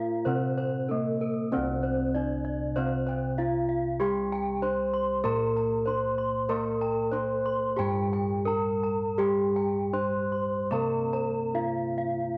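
This short, ceremonial excerpt of Javanese gamelan opens with three bronze metallophones and a bass line of bossed gongs sounding together, and a second set of bossed gongs joins with quiet arpeggios at 0.3 s. Up front, the lead metallophone carries the melody with a wooden mallet, its ringing tone sounding vintage and band-limited, with a touch of analog delay. Beneath it, a close-miked, dry metallophone struck with a horn mallet plays a full, bright accompaniment. The bass gongs sound round and beating, and a higher metallophone spins out arpeggios whose paired tuning produces shimmering beats. The background gongs stop at 12.0 s, and the rest of the ensemble plays on until the cut at 12.4 s, set in moderate spring reverb and small-room ambience on a homemade cassette recording.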